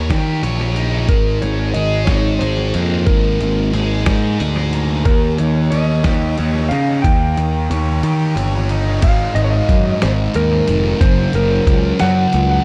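A round, punchy fuzz bass sits up front in this trippy, hazy psychedelic rock excerpt, moving slowly at 60 BPM in a straight 6/8 while a bright, double-tracked fuzz guitar riff, drenched in phaser and tape echo, churns over Eb7 and Absus2 chords. A dark, clean lap steel carries the melody with slide and volume swells trailing tape echo, and a muffled, pitched-down sampler-style drum kit with a thumpy kick thuds beneath, its kick and snare dropping out from 8.0 to 9.0 seconds. At 9.0 seconds the music settles into Ab mixolydian, all wrapped in an echo-heavy digital ambience.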